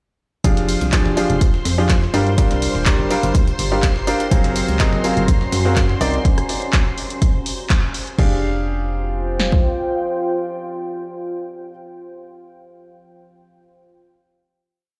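A bright baby grand piano opens this soulful, bittersweet piano house piece with an up-front rhythmic chord riff through delay, joined at once by a round FM bass riff, a punchy analog drum machine's four-on-the-floor kick, claps and hats, a gritty looped breakbeat in the background, and shimmering vintage string-machine violins holding high chords, all pumping with sidechain except the drum machine and breakbeat. A deep, moody ambient pad fades in from 1.5 s, adding chorus and its own reverb beneath the groove. After a band accent at 7.7 s, the piece settles onto a final chord from 8.2 s, with the pad and piano lingering in a stone-room ambience.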